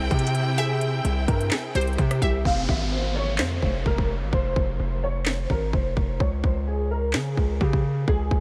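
A hard-hitting 808-style bass anchors this melancholic trap excerpt, punchy and saturated with a sine body and a noise layer, sitting up front from F1 to Db3 in a half-time feel. Beside it, an electronic trap kit with vintage 12-bit sampler grit brings a hard-clipped kick, a sharp snare, crisp hats, handclaps and rim clicks. A dark, intimate concert grand carries the melody from G4 to F5, its boxy tone and audible action noise softened by ensemble chorus, a low-pass filter and analog delay. Over the opening, lush bowed strings with vibrato and portamento hold chords, and a glassy, detuned wavetable pluck adds a second line in the background with chorus and delay; both stop at 2.4 s. The harmony moves from C to F minor, and from 2.5 s the hi-hats drop out while an electronic downlifter sweeps through until 6.2 s. Light reverb gives the mix a modest sense of room.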